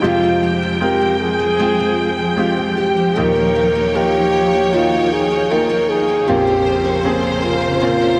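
An emotional, heartfelt pop excerpt at 77 BPM in Eb mixolydian opens with a French horn carrying the melody up front, its tone roomy with light vibrato, over a clear concert grand piano with deep bass and a lush, expressive string section holding sustained chords with vibrato and portamento. Behind them, a picked steel-string acoustic guitar with fresh strings plays arpeggios, coloured by ensemble chorus and delay, while a rich violin section with a smooth top enters at 3.2 seconds with a second line through its own delay. The chords move from Fmadd9 to Ebadd9 to Bbmadd9, and the dreamy mix is soaked in huge ambient reverb and carries lossy compression artefacts.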